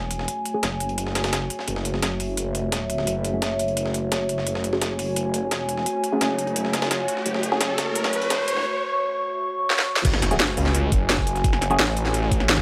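A straight 4/4 drum and bass groove at 172 BPM drives this dark, futuristic excerpt in F# minor. Two layered drum kits run together from the start: an up-front kit with a cracking snare, crisp hats and crash cymbal, and a gritty, pitched-up breakbeat kit with a high-tuned snare, both carrying a tape-warm tint. Underneath, a snarling distorted saw bass holds the low end with saturated, detuned unison weight and a moving notch, pumping against the sidechain. Beside it, a deep, moody analog pad sustains an F#madd9 chord through chorus and phaser. A muted, mellow dub chord stab sits in the background with a filter pluck, phaser and delay; its filter sweeps through the build-up before it drops out and then returns near the end. A riser and impact add tension from 5.9 s, and after a short drum fill the drop lands at 10.0 s, where a knocking electronic kick joins, all set in a moderate digital room reverb.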